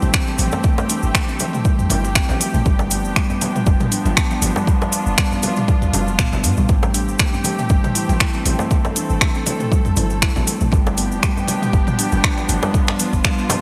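An overdriven, deep electronic kick drives this earthy, spiritual afro house excerpt, joined up front by a layered deep house kit of finger snaps, metallic hi-hats and toms, while a boomy 808-style bass and a woody, ringing kalimba with delay pulse under sidechain pumping alongside veiled, con sordino string chords, as bright, thin-skinned congas, a deep, dry djembe entering at 0.5 seconds and a grainy cabasa sit in the background of a bright 1980s-style digital mix with light small-room reverb.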